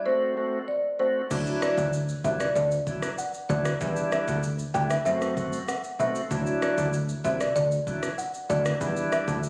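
A straight four-four dancehall groove, sultry and tough, opens with a woody soft-mallet marimba melody carrying digital delay over a reedy, key-clicking tonewheel organ turning through a slow rotary speaker with light overdrive, until at 1.3 seconds a punchy, funky analog bass with ring-modulated filter plucks and an electronic afro-pop kit of deep kick, rim click, shaker and crash, overdriven and re-recorded in a small room, join in, the whole cut from a longer piece and captured on a phone in the room with light studio reverb.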